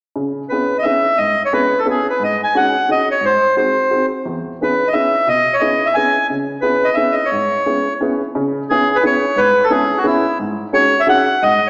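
A dark upright piano opens this musette waltz at 0.2 seconds, its mellow, woody tone and short sustain setting up an accompaniment in C# minor, with the accordion taking the melody just after at 0.5 seconds. Moving at 176 BPM in 3/4 with a light swing on the eighths, the piece feels bittersweet and whirling. The reedy, hollow accordion sits up front and mid-forward, carrying the tune in a higher register above the piano's lower range, and it is the louder of the two. Harmonies circle through C#m7, G#7sus4, G#7 and E6, with the opening phrase returning at 8.4 seconds. Both instruments are bathed in a recital hall reverb and heard from further back in the room, giving a small-speaker character to this fragment of a longer piece, which cuts off at 11.7 seconds.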